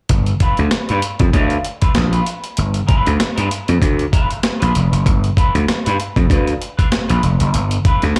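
Playful, energetic funk opens at 0.1 seconds with a gritty slap bass and a sampler-style breakbeat drum kit hitting together, both overdriven and up front. The bass is bright, growly and punchy, its electric tone heard direct and amped as it works in a low register over a G9 chord. The drums carry a thumpy kick, a medium-tuned snare and hi-hat, compressed and re-recorded in a small room for a crunchy, sampled character. At 0.4 seconds a clean, picked electric guitar joins further back in the mix, its tone shaped by wah, tube saturation, spring reverb and slapback echo. The 16th-note swing gives the groove a loose, bouncing feel, and the whole performance sounds like a live gig heard through a venue's PA with club reverb, cut from a longer piece.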